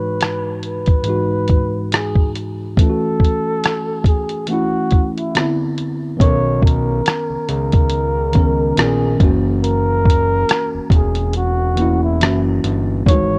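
A lazy 70 BPM lo-fi hip hop groove in 4/4 with a light 16th-note swing comes from a compressed, pitched-down sampler-style drum kit of muffled hi-hat, rim click and thumpy kick, setting a mellow, nostalgic mood in B major with cassette-tape grit and a dry, close sound. A worn, slightly out-of-tune tine electric piano moves through chords such as Emaj9/G# and Cmaj9, while a breathy, whispered flugelhorn plays an intimate jazz-style solo with vibrato, soft attacks and scooped notes. At 6.2 seconds a fat, saturated analog bass with a detuned sawtooth edge and filter pluck joins up front for the rest of this fragment, which is cut from a longer piece.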